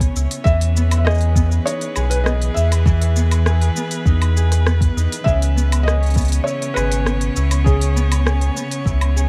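A straight 4/4 pulse at 100 BPM comes from a soft, produced electronic kick drum and an organic electronic drum kit of crisp hi-hat, cabasa, rim click and woodblock, setting a wistful, intimate folktronica mood. Underneath, a deep, round sine sub bass sits up front with a fast attack and sustained notes. A fingerpicked Celtic harp rings out arpeggios through a digital delay, while a rich, close string quartet, one bowed player per line, holds smooth, even chords with vibrato. From 0.4 s a felt-muted upright piano carries the melody in a mellow, muted tone with short sustain and audible action noise, also touched by digital delay. The harmony moves from Emaj7 to C#m7 at 5.3 s, all set in a small room ambience with vinyl crackle, in this brief cut from a longer piece.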